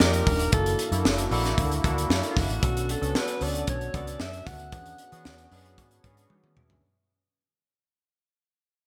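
A straight 4/4 groove at 114 BPM drives this slick, bittersweet slice of polished 1980s jazz-funk pop, cut from a longer piece and fading out over its 6.8 seconds as the harmony moves from D#maj9 through F#7alt, Bm7 and E13. A crisp fusion drum kit with a punchy kick and high-tuned snare sits up front over a dark, foam-muted fingered electric bass, while a barky tine electric piano, lightly overdriven through a combo amp with analog chorus, accompanies and plays a fill from 5.3 s before the drums add their own at 6.3 s. A breathy alto saxophone carries the melody with subtone and scooped notes through a digital delay, and the mix sits in a lush hall reverb with a bright 1980s-style digital sheen.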